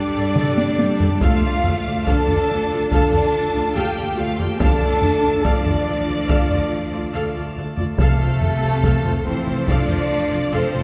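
A cut from a longer cinematic, epic orchestral film score opens on a Gsus2 chord held by mellow French horns with light vibrato, a full, brilliant pipe organ plenum with baroque voicing and chiff, lush bowed violin sections carrying the melody and a second line, and an airy, soft-attacked flute ensemble. Rich, smooth cellos anchor the bass from the start, joined at 0.2 seconds by an even-toned viola accompaniment and a focused double bass section. Hard-stick taiko drums enter at 0.4 seconds with a fill, their distant, large-room sound arriving as the harmony settles onto D minor and later moves to F at 8.0 seconds. The horns and taiko sit most prominently, while the violins, violas, flutes and organ blend further back beneath a wet scoring-stage reverb that places the whole ensemble at a distance. The mood is epic and relentless, with a straight, steady pulse in four.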